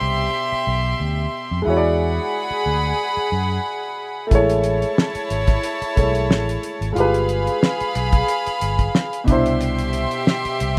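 Warm and smooth, this lush 1970s-style soul excerpt moves at 91 BPM with a gentle sixteenth-note swing, as a close, reedy chamber violin section with light vibrato and gut-string tone carries a second line over natural baby grand piano accompaniment and a round, amped fingered electric bass, until a cloth-damped, thuddy drum kit with a fat snare, tight kick and rolled-off top enters at 4.3 seconds, all under light reverb in a rough home demo mix.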